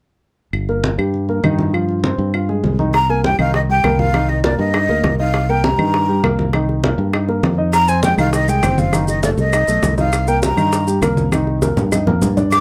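Fiery and sophisticated, this Afro-Cuban jazz excerpt in straight 4/4 opens with a growly, punchy fingered electric bass up front, woody close claves, and low-tuned congas with a thin-skinned, vintage, band-limited character, while a warm baby grand piano adds natural-sounding accompaniment. At 2.9 seconds a breathy metal jazz flute takes the melody with a straight tone, soft attack and lifted highs, sitting up front and playing expressively, as tight, high-tuned bongos with a compressed, saturated edge join the percussion. Grainy maracas arrive at 7.7 seconds, sitting low in the blend. The harmony moves from Gm through Fm9/G into a Cm7-centred passage that passes through Fm7 and F#dim7 before returning to Cm7. A drum fill from 11.3 seconds caps this fragment of a longer piece, all set in a light reverb.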